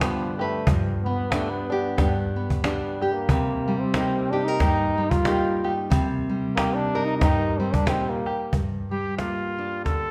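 A wet, roomy studio reverb surrounds this short, intimate and wistful passage of acoustic folk for a small band, cut from a longer piece and moving with a gentle swing. A muted French horn carries the opening solo up front, its nasal, brilliant tone shaded with vibrato and a smooth top in a classical style until 8.5 seconds. Beneath it, a full-bodied nylon-string guitar fingerpicks the accompaniment with audible finger squeak, while an open-back banjo adds twangy, plunky fingerpicked arpeggios touched by slapback echo. A woody cajon with faint snares keeps the beat close and present. As the harmony settles from seventh chords onto G minor, a clear trumpet takes the melody at 8.9 seconds, its soft attack and light vibrato stepping forward as a brief solo.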